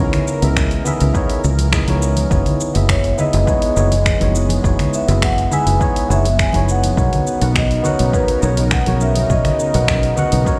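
A punchy, up-front fingered electric bass anchors this warm, wistful sunset chillout excerpt, joined by a clean tine electric piano with gritty vintage sampler character and delay, a thick, detuned sawtooth pad with chorus in the background, and a metallic, ringing vibraphone that takes the melody from 2.9 seconds, its motor off and trailed by digital delay. An overdriven electronic kick entering at 0.6 seconds and a layered deep house kit of finger snaps, hi-hat and shaker drive the straight groove, while hard-handed congas sit further back, all carried through a stone room's reverb as the chords move from C#m9 to F#13sus4 to Bmaj9.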